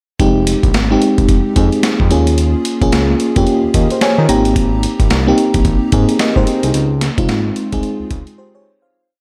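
Confident and bouncy, this short new jack swing piece in F minor moves at 110 BPM with a 16th-note swing. An FM electric piano layered with a soft pad sits up front, its lush, dreamy tone colored by chorus and tremolo as it plays syncopated, rootless chord stabs through Fm7, Eb7sus4, Abmaj9 and Dbmaj7, adding a short fill around 3.5 seconds. Beneath it, a smooth synth bass blends sawtooth and square waves into a saturated, sustained line with vibrato, bouncing along in a swung synth-funk pattern full of muted ghost notes and slides. The sampler-style drum kit is gritty, compressed and pitched down, pairing a thumpy kick and high-tuned snare with hi-hat in an up-front, hard-swung drum-machine beat that carries the feel of a large room. The piece fades out from 6.7 seconds, with a brief break as the drums stop at 8.4 seconds, leaving the electric piano to ring alone until 9.1 seconds.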